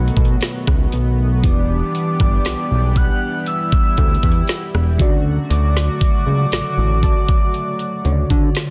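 Smooth and dreamy, this slow contemporary R&B excerpt moves at 59 BPM in D major, drifting from B7 to Em7 and settling on Dmaj7 at 5.0 seconds. A round, octave-layered synth lead carries the melody high above a lush FM electric piano with its soft pad layer and a shimmering, retro pulse-width pad, while a very quiet round pluck adds faint texture. Up front, a fat, saturated analog bass and an electronic trap kit with a knocking kick, woody snare, rim clicks and metallic hats anchor the dense, heavily limited mix in digital ambience.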